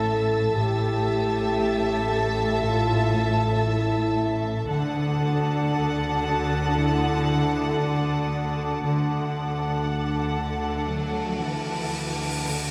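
A clear, punchy French horn section holds sustained chords over smooth, even bowed cellos and double basses in this mysterious, ominous suspense cue, cut from a longer film score. A dark, woody violin section carries the melody in the background, joined by a focused, close second violin line, expressive, distant violas, a lush high violin texture and the glassy, ethereal sustained chords of a glass harmonica, while a very quiet concert harp rings out a thumb-plucked riff. The harmony shifts to D at 4.7 seconds, and a huge, bright cymbal swell arrives at 10.7 seconds, all set in a reverberant scoring-stage space.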